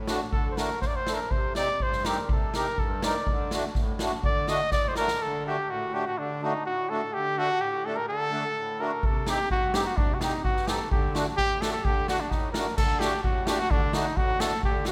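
Klezmer in a festive, soulful mood, cut from a longer piece in D phrygian dominant at 126 BPM in 2/4 that gradually speeds up over a hall-like reverb and shifts between D and C minor. An up-front, warm cornet carries the melody with scooped, pop-style notes and takes a solo through the first 5.2 seconds, while a reedy, sweet accordion with light tremolo tuning provides accompaniment throughout. A polished acoustic street-band drum kit with a boomy kick, medium-tuned snare and dark cymbals enters at 0.1 seconds, plays a fill from 4.7 seconds, drops out at 5.2, and returns at 9.0 seconds.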